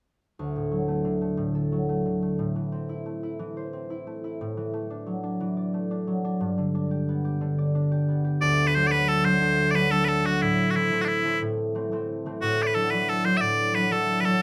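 A concert harp opens at 0.4 seconds, fingerpicked and mellow, its ringing tones sitting up front as it lays down the accompaniment for this lively Celtic folk piece in D mixolydian. The music moves in a straight 12/8 at 120 beats per minute counted in dotted quarters, and the harp spans a deep low register up through its higher strings while the chords move from D to Am, Dadd9/A and G. At 8.4 seconds loud bagpipes take the melody, piercing and continuous, a bright solo voice placed squarely in front. The harp carries on beneath them through the same chords of D, Am and Dadd9/A. A small room lends a wet reverb to the sound, and the bright passage, cut from a longer piece, stops at 14.4 seconds.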